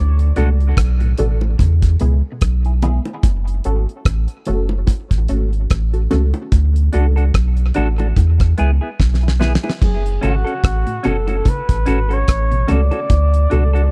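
A deep, round sub bass sits up front in this heavy, spacious dub reggae excerpt in F# minor at 73 BPM with a swung 16th feel, joined by a damped 70s drum kit with a fat snare and dark cymbals, muted, detuned chord stabs with phaser and tape echo, low-tuned bongos with tape echo, a very quiet picked clean electric guitar, and a dark, scooped semi-hollow guitar with tape echo from 6.9 seconds, before a distant flugelhorn with vibrato and tape echo takes the melody at 9.8 seconds, all in a dry, close small-room 1970s-style sound.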